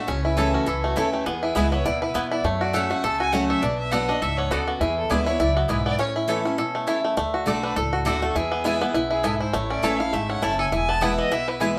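A roomy studio reverb surrounds this short, lively bluegrass cut, which captures a band playing live together in one space. The twangy, percussive banjo sits up front, picking out arpeggios with fingerpicks, while a bright, picked steel-string guitar fills in the accompaniment beneath it. A single bowed fiddle with a dark, distant tone and light vibrato carries the virtuosic melody. A warm mandolin adds picked stabs on its double strings, and a thumpy upright bass with gut strings and a woody pizzicato sound anchors the low end from 0.1 s. The swung, driving groove moves through a bright major-key progression, shifting to a new passage at 7.2 s before the excerpt breaks off at 11.8 s.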